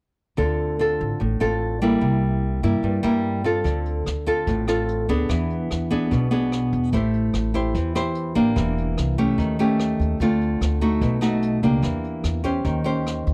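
Bossa nova excerpt in D minor at 147 BPM, smooth and melancholic, where an up-front fingerpicked nylon-string guitar with audible finger squeak and a woody, thumpy pizzicato upright bass on gut strings play from 0.4 seconds through chords like Dm7, E7 and Eb7#11, joined at 3.7 seconds by a brushed jazz kit with a boomy kick, rim click and rolled-off top, all captured in a dry, close 1970s-style small room.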